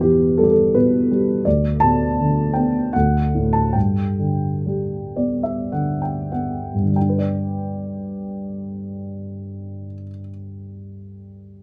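In a rubato 3/4 lilt, this short, peaceful passage cut from a longer classical piece features a solo baby grand piano, its tone dark and mellow, with the audible action noise adding a vintage intimacy. The tempo eases back from 1.5 s to 7.0 s, and a tender piano fill between 4.7 s and 7.0 s closes the opening phrase before a new section begins. The instrument sits up front in a moderate studio ambience, its smooth playing spanning from deep bass to the upper middle register.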